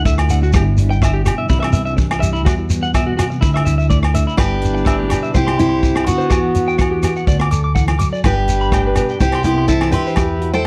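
Highlife guitar band groove at 124 BPM in G major, danceable and warm, with a dark, clean tremolo electric guitar and woody, growly pizzicato upright bass under slightly broken-up arpeggios with tape echo on a second electric guitar, a punchy vintage drum kit of hi-hat, kick and rim click, grainy shekere and ringing agogo bells, until at 4.4 seconds a full-bodied picked steel-string acoustic guitar takes the melody up front while a bright alto saxophone with vibrato adds a second line in the background, all in a dry, close 1970s-style studio sound cut from a longer piece.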